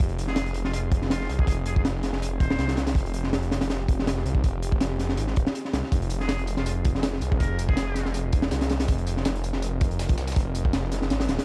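A crunchy breakbeat kit drives this raw, frenetic drum and bass and jungle excerpt at 162 BPM in a straight 4/4, its high-tuned snare and tight kick sitting up front with a dark, rolled-off top and a small-room feel. Beneath it, a thick, menacing detuned saw bass holds the low end in F minor, saturated and beating, with a fast attack and sustained notes. An airy, breathy pad lingers in the background on a single Fm7 chord, its slow attack, long release, chorus and moving notch giving it a mellow, drifting quality. A trumpet with a straight mute floats in from 0.3 s and again from 6.2 s with a nasal, whispered pop-style line, distant and roomy, trailing dub echo and light vibrato. At 5.9 s a gritty, compressed soul sampler-style kit joins far back in the mix, adding a fat snare, hi-hat and tambourine thinned by high-pass filtering and re-recorded in a large room. The overall production is dark and steeped in studio reverb.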